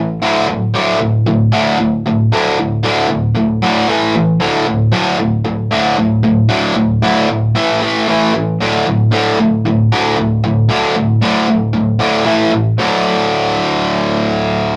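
Rock with an aggressive, driving mood at 114 BPM in a straight 4/4, this short 14.8-second cut from a longer piece features a lone bright, overdriven, double-tracked electric guitar played up front with a picked attack, shifting between D5 and A5 power chords in its low range before a brief new section arrives at 12.8 s, all captured as a rough rehearsal-room recording with tube saturation and a modest small-room reverb.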